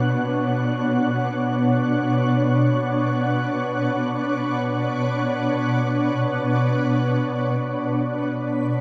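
A shimmering, ethereal pad sits up front in this melancholic, spacious ambient excerpt, holding sustained chords in free time with a detuned, granular sheen, an octave-up shimmer and chorus. Beneath it, a lush cello section plays a very quiet bass line, bowed with vibrato and portamento. From 0.1 s a string-like, tense drone hovers at the edge of hearing, barely audible. At 6.9 s a filter sweep passes over the pad as the piece moves into a new section. At 8.2 s a reversed, dreamy texture enters very quietly, and the whole recording sits in a vast cathedral reverb whose long tail lends it an echoing, spacious air.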